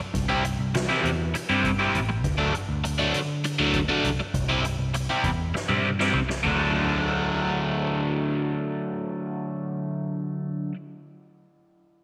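The rhythm moves in a straight 7/8 at 200 BPM counted in eighths, giving this psychedelic rock fragment, cut from a longer piece, a hazy, kaleidoscopic lurch. A crunchy, bright, overdriven electric guitar, double-tracked and up front, carries the riff from the first moment, colored by a phaser as it works between C and D chords in D mixolydian, tuned slightly low to A4 = 438 Hz. Beneath it, a picked electric bass, amped and foam-muted with a warm tone, holds down the low end. An acoustic drum kit played with soft mallets brings a fat snare, a boomy kick, dark cymbals, toms, hi-hat and ride, all heard with a natural hall character, and it rolls into a fill at 5.5 s before dropping out at 6.6 s. From there guitar and bass carry on alone into the second section, the whole mix bathed in a moderate echo-chamber reverb with a 2.5-second tail.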